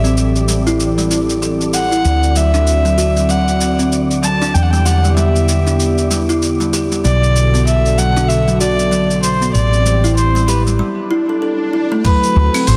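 A nasal, earthy kamancheh carries the melody with light vibrato and portamento, trailed by tape echo, in this meditative, mystical organic downtempo excerpt cut from a longer piece. Beneath it, a ringing, thumbnail-plucked kalimba plays low-pass-filtered arpeggios, and a detuned sawtooth pad holds soft chorused chords. A dark, round fretless bass sits up front; both pad and bass pump against the sidechain. Gritty, compressed electronic cabasa, hi-hat and claves keep a swung sixteenth feel, while an airy, breathy wind-like texture hovers in the background. At 10.8 s a break opens, an electronic swell enters at 11.1 s, and a thumpy kick drum lands at 12.0 s in a dense, heavily limited mix.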